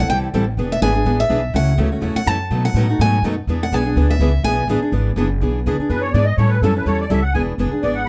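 A swinging 4/4 groove drives this lively, brief acoustic string swing snippet, where a bright, picked steel-string guitar carries the melody with finger squeak until 4.7 seconds over two more picked guitars, one boxy and set in the background, and a woody, thumpy upright bass on gut strings, before a reedy, shimmering musette accordion enters at 5.9 seconds with a second line, all under light reverb in a dark production.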